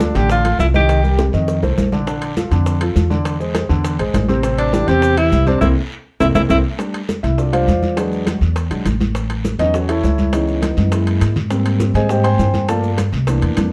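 Danceable and sunny, this Afro-Cuban jazz excerpt in F major moves at a brisk 204 BPM, with a warm tenor saxophone stating the melody up front in brief phrases with light vibrato and scooped notes, over a grand piano and a woody, pizzicato upright bass. Congas, soft-handed bongos, ringing metal-shelled timbales from 0.2 seconds, a raspy guiro and grainy maracas fill the percussion bed, with drum fills and a band accent before the piano takes a solo at 6.8 seconds that runs to the end. The dark production sits in moderate studio reverb, and the chords range through colorful changes such as Eaug7, Gb9 and Gm9.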